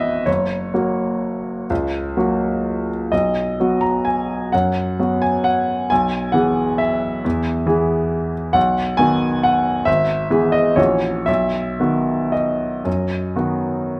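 A clear, intimate baby grand piano sits up front in a moderate large-studio reverb, its natural tone carrying audible action noise. This brief, sparkling classical waltz in B major moves in 3/4 with a playful rubato between 111 and 146 BPM, the solo piano spanning F#1 to A#5. Cut from a longer piece, it travels from F# through B and E/B before closing on B at 11.3 seconds.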